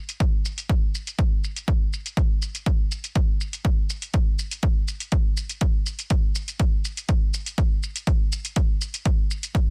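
House groove at 122 BPM with a funky, sensual lean and a light swing on the sixteenths, in which an up-front, punchy analog electronic kick drum joins at 0.2 s beneath layered, metallic electronic hi-hats and shaker that pump with sidechain and sit under a low-pass filter, all captured dry and sealed in a dense, heavily limited modern master.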